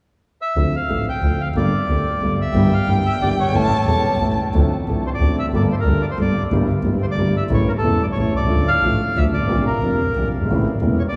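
A reedy, dark bandoneon carries the melody from 0.4 s in this melancholic, passionate tango excerpt in D minor, moving in a rubato 3/4 at 182 BPM over an intimate concert grand piano with audible action noise and a rich, close bowed double bass sung with vibrato and portamento. A dark, smooth-topped violin adds a brief expressive second line between 2.6 and 4.3 s, while the harmony turns through Dm7, Gmadd9, Edim/G and A before settling on Dm, Bbadd9 and A. The whole is bathed in a wet cathedral reverb with a vintage, band-limited tinge to the bandoneon.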